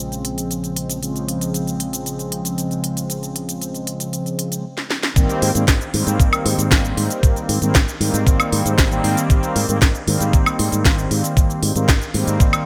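Sunny and groovy, this nu-disco excerpt moves at 116 BPM in Ab major, with a round, detuned synth brass carrying chorus and delay over a punchy, envelope-filtered fingered bass that pumps with sidechain and a crisp house kit of cracking snare, hi-hat, shaker and woodblock. A drum fill at 4.8 seconds leads into the drop at 5.2 seconds, where the chords shift from Bbm7 to Abmaj7 and a thumpy, tape-warm electronic kick enters. The bright 1980s-style digital production sits in light reverb.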